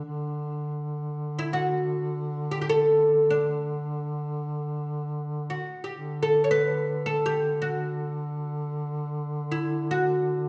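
Festive and warm, this Turkish makam ensemble passage places a bright, woody oud melody, plectrum-plucked on fretless double strings, up front over a mellow duduk drone with light vibrato, soft attack and scooped notes, both carried by a dark production and a recital hall's wet reverb across the full 10.5 seconds.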